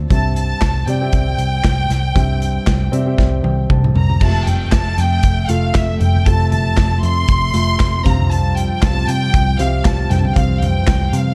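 A lush, bowed violin section carries the melody high up, its vibrato focused and its top end smooth, in this dramatic, driving slice of piano-led pop at 117 BPM in 4/4 with a light sixteenth-note swing. Beneath it, a concert grand plays accompaniment with deep bass and short sustain, while a vintage foam-muted picked electric bass sounds round, punchy and amped. A modern acoustic drum kit in a small room, with a tight kick, a medium-tuned snare, hi-hat, toms, crash cymbal and handclaps, keeps a dark, rolled-off tone. The piano slips in a fill from 2.7 seconds, with a drum fill just after, leading into a new section at 4.2 seconds, where a mellow, detuned sawtooth analog pad with chorus and a slow attack settles in the background. The chords move from C to Fmaj7 and then Csus4, and the overall production is dark and warm, cut from a longer piece.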